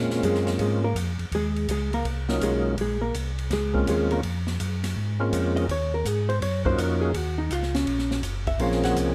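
A percussive tonewheel organ opens this late-night, bluesy soul jazz organ trio excerpt in Bb minor with a lightly overdriven melody, full and up front with its slow rotary speaker and chorus vibrato, while a mellow, round second organ voice carries a dark, clean bass line with audible key click. At a swung 165 BPM in 4/4, a polished big-band drum kit with dark cymbals, a medium-tuned snare and a punchy kick joins at 0.1 seconds, and a hollow-body electric jazz guitar enters at 0.2 seconds, its dark, compressed, fingered tone taking the solo spotlight. The harmony moves between Bbm7 and Ebm7. The drums have an airy hall quality, and moderate studio reverb surrounds the trio.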